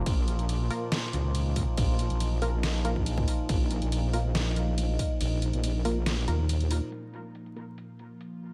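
A dry mix sits under a steady layer of vinyl crackle in this heavy, dark deep dubstep excerpt, cut from a longer piece and moving with a half-time feel. It opens on a drop, with a detuned sawtooth-and-sine wobble bass up front, compressed and sustained with a fast attack and a chorus sheen, over a punchy, layered electronic kick re-recorded in a large room. A dubstep kit of hi-hat, deep snare and crash cymbal, also re-recorded in a large room, sits further back behind low-pass filtering on the hats, cymbals, snare and room. Beneath it all, a resonant drone of sustained chords swells in slowly with moving overtones, built-in reverb and a long release, while a muted, filter-plucked dub chord stab adds short, mellow hits with chorus and dub echo. The kick drops out at 5.2 seconds, and the bass stops shortly before a new section begins at 6.9 seconds. The kit and stab carry on into it, and the drone sustains to the close.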